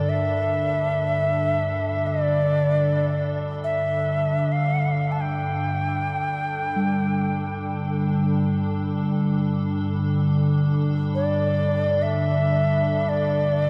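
World meditative music in free time, haunting and spacious, in which an airy cedar flute carries the melody up front with vibrato, tongued notes and a chiff, trailed by delay. Beneath it, an icy, crystalline glass pad holds a low drone with detuned chorus shimmer, slow attack and long release. At 6.8 seconds a pure, ringing quartz singing bowl struck with a wooden striker adds slow beating, all set in a dark production with a huge, long reverb in this section cut from a longer piece.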